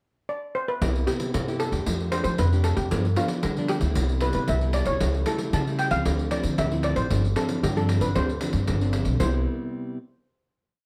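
A dark, lightly reverberant production frames this sunny, lively samba and choro piece in C major at 114 BPM, where a shimmering double-seconds steel pan with plate reverb enters at 0.3 s to carry a motif-based melody in sentence phrases; at 0.8 s it is joined by a full-bodied, fingerpicked nylon-string guitar playing thumb bass and syncopated plucked chords, a woody, growly pizzicato upright bass sitting up front with a samba bass figure, and a jingly, distant pandeiro, before the other parts drop out and the guitar sustains the final Cmaj7 to 10.0 s.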